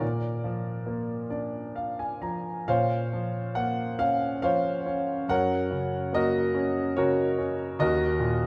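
A warm, intimate grand piano sits up front with audible action noise and long sustain, playing a melancholic, reflective classical solo in a lyrical 3/4 with uneven, rubato beats, a fill from 0.9 to 2.7 seconds leading into a new section whose chords move from Bbmadd9 through Gb to Ebm, all carried by a moderate recital hall reverb in this short passage cut from a longer piece.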